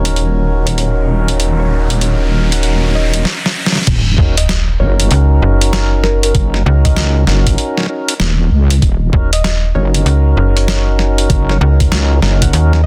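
A heavy, dark wobble bass with tube saturation drives this playful, swaggering glitch hop excerpt at 97 BPM in Eb minor pentatonic, alongside gritty, pitched-down boom bap drums, tonewheel organ stabs through a slow rotary speaker with sidechain pumping and tape echo, a woody, wave-folded pluck melody set back behind lush chorus and cassette tape, and a very quiet, cloudy granular pad. An electronic riser builds from 0.6 s over a drum fill into the drop at 3.9 s, where a thumpy electronic kick enters under a sub drop, followed moments later by a snappy, metallic FM slap bass, up front. The swung sixteenths and dense, heavily limited master keep the groove tight and loud in a digital ambience.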